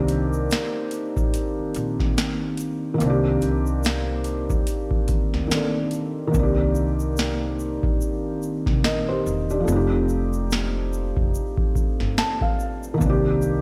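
A felt-muted upright piano, soft and dark with audible action noise, opens this hazy, melancholic lo-fi hip hop excerpt in C dorian at 72 BPM alongside a woody pizzicato upright bass, while a booming analog drum machine with a deep kick, crisp snare and metallic hats sits up front. A grainy egg shaker lingers in the background, and the chords move from Cm9 through Cm7 and F7 back to Cm9 under light small-room reverb, with the hi-hats dropping out at 6.3 seconds and a piano fill arriving at 11.8 seconds.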